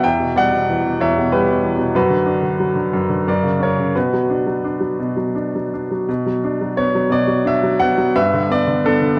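Moody and cool, this brief passage of lyrical classical solo piano is cut from a longer piece and moves in a flexible, rubato three-beat metre. A clear, intimate baby grand carries everything alone from 0.0 to 9.2 seconds, ranging from E2 up to G5. The instrument sounds natural and up front, with long sustain and audible action noise that brings the listener close to the keys. The harmony drifts from Emadd9 through Bm/F# and F# to settle on Bm, and the opening phrase returns at 6.1 seconds before opening onto Gadd9 near the close. A moderate concert hall reverb surrounds the piano, and the dark, warm production deepens its reflective, shadowed character.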